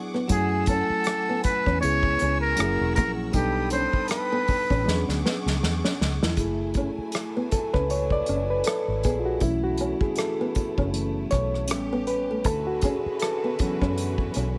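R&B and neo-soul with a smooth, late-night feel and a gentle swing, where a buzzy, whispered trumpet in a metal mute carries the melody up front until 5.2 seconds, a drum fill leads at 4.9 seconds into a lightly overdriven, barky reed electric piano solo from 6.4 seconds, and the groove rests on an acoustic kit played with bundle sticks, a round, foam-muted vintage electric bass, a woody fingerpicked nylon-string guitar in the background and bright, intense bowed strings holding sustained chords, all in a small room with light reverb.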